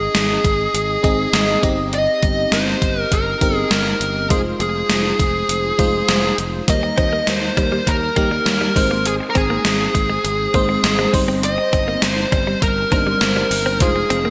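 Bright, digital 1980s-style production set in a lush hall reverb frames this nostalgic, romantic pop excerpt in straight 4/4. An up-front fuzz lead guitar, dark and distorted, carries the melody over a dreamy FM electric piano with a soft pad layer and chorus, a growly fretless bass with analog chorus, and a thumpy, overdriven drum machine whose snare rings with gated reverb. At 6.8 s a clean, compressed electric guitar joins in the background with a chorused riff, as the chords move from Ab through Cm/G and Fm7 to Eb.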